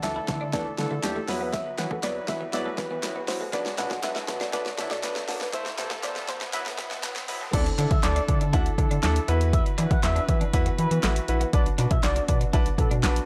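Bittersweet yet confident, this dance-pop excerpt opens with a build-up in which a soft, round pluck carries the melody with chorus and tape echo over a polished grand piano and a deep, nasal analog bass, both pumping from sidechain compression, while punchy, overdriven deep house drums play a fill beneath a filter sweep and a faint riser. A distant, roomy brass ensemble holds dark sustained chords, a clean, compressed twelve-string electric guitar picks a riff in the background, and crisp group handclaps sit very quietly behind the kit. At the drop at 7.5 seconds, a smooth, expressive synth lead with vibrato takes over the melody, all captured in a dry, gritty cassette recording.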